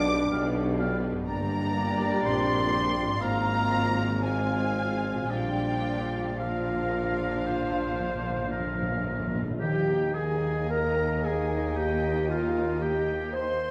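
A slow, romantic classical movement for symphony orchestra in Eb major, this excerpt is lyrical and serene, moving in 4/4 at about 54-63 BPM with a flexible, rubato feel. Muted violins carry the melody in a veiled, dark voice with vibrato, while a hollow, airy flute, a distant oboe and a second, softer group of muted violins in the background add supporting lines. Con sordino violas and a mellow bassoon fill in the accompaniment, and a French horn section holds smooth sustained chords alongside a very quiet, ringing harp playing thumb-plucked arpeggios. Muted cellos, a lush bowed double bass section and a very quiet tuba anchor the bass, and timpani with medium mallets enter from 5.3 to 9.6 seconds for a fill in the background. The harmony drifts from G7/B through Gm and Fm/Ab to Bb before settling on Eb at 9.6 seconds, all set in a reverberant scoring-stage space with lossy compression artefacts.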